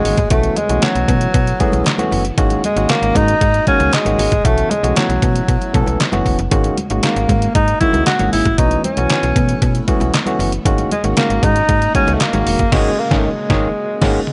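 A light reverb and digital ambience give this short cut from a longer early-eighties boogie funk piece a slick, late-night sheen, with a rounded top end. At 116 BPM in a straight 4/4, a detuned 8-bit drum machine sits up front, its thumpy kick, medium-tuned snare, handclaps, hi-hat, toms and crash overdriven and re-recorded in a small room, while very quiet congas with a bright, thin skin add acoustic color until 12.6 seconds. A slap-like FM bass with a snappy, metallic attack anchors the low end, and a barky tine electric piano, lightly overdriven through a combo amp, supplies accompaniment. Beneath them a very quiet string machine spreads lush, sawtooth ensemble chords with a slow attack and chorus, following an alternation between B9sus4 and G#9sus4. Over the top, a breathy alto saxophone with vibrato carries the melody, up front yet roomy, before the band hits an accent from 12.7 seconds to the close at 14.3 seconds.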